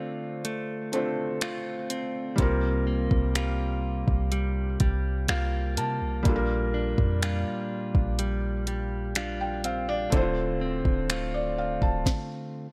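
This excerpt of contemporary R&B opens with a felt-muted upright piano and a clean electric guitar, direct-recorded and treated with tape echo, before a smooth R&B drum kit enters at 0.4 seconds. The mood is longing and late-night, moving at a slow 62 BPM in 4/4 with a straight feel in D minor. The piano sits up front, mellow and intimate with thin felt and audible action noise. The guitar plays compressed, picked arpeggios beneath it, and the piano steps forward with a fill midway through. The electronic drum kit, also up front and tape-warm, blends finger snaps, warm hi-hat, a soft kick and a sharp snare, while a deep, boomy 808-style bass with a sine tone and a fast, decaying attack arrives at 2.4 seconds. The harmony moves from Dm7 through C7sus4 and Gm7/Bb back to Dm7 in a dry, close sound, and a stop arrives at 12.1 seconds, with the guitar the last part sounding until 12.7 seconds.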